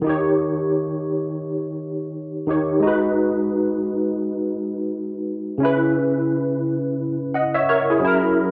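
Smooth and cinematic, this brief soul excerpt moves at 86 BPM in 4/4, with a gentle 16th-note swing and a C# Dorian colour. A single tine electric piano carries everything on its own, sitting up front with a bright, barky bite that comes from light overdrive through a combo amp and a shimmering ensemble chorus. Its playing spans from C#3 to F#5 across the full 8.5 seconds. The harmony passes through D#7, then G#m7 at 2.8 seconds, where a second section begins, and settles on C#m7 at 5.6 seconds. A light reverb gives the instrument a touch of space while keeping it close and present. Cut from a longer piece, the fragment feels like a cinematic scene waiting to unfold.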